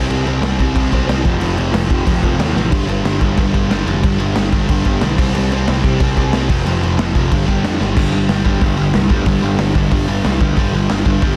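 Raw and urgent, this punk rock excerpt charges along at 183 BPM in a straight 4/4, with a crunchy, double-tracked overdriven guitar riff up front cycling through C5, F5 and G5 power chords, a growly fuzz-drenched picked electric bass underneath, and a punchy, dark-toned garage drum kit with a rolled-off top crashing through fills at 2.6 and 7.8 seconds before a new section kicks in at 8.0 seconds, all packed into a dense, heavily limited, nearly dry mix.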